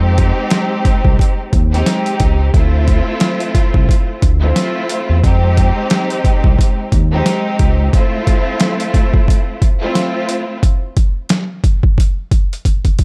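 Dark and moody, this short boom-bap hip-hop excerpt rides a swung sixteenth-note feel in 4/4. A bright studio string section carries the accompaniment with vibrato and an intense, bowed ensemble tone, sitting up front but filtered and coloured by cassette tape until it drops out at 10.6 seconds. Underneath, a smooth gliding synth bass blends sawtooth and square waves into a sustained, portamento line that stops at 7.9 seconds. The sampler-style drum kit enters at 0.2 seconds, pitched down, compressed and overdriven into a gritty sound with a thumpy kick, a medium-tuned snare and hi-hat, and it closes on a short fill. The harmony moves through minor ninth chords before settling on Fmaj7/A, all set in a dark digital ambience.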